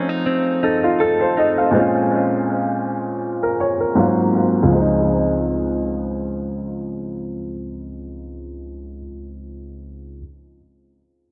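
R&B excerpt at 81 BPM in 4/4 with a light sixteenth-note swing, sitting in Db major with a tender, smooth mood. A felt-muted upright piano carries the accompaniment from 0.0 to 10.2 seconds, its soft, mellow, intimate tone sitting up front and trailed by dub echo. A direct-recorded clean electric guitar plays picked arpeggios, compressed and close, before dropping out at 2.3 seconds, its line also repeating through dub echo. The harmony moves from F7 to Bbm7 and Ab13 before landing on Dbmaj9 at 4.7 seconds, where a new section begins. A filter sweep runs through the opening section, and the echo-heavy mix is darkened by a low-pass filter and bathed in a moderate plate reverb with a long tail.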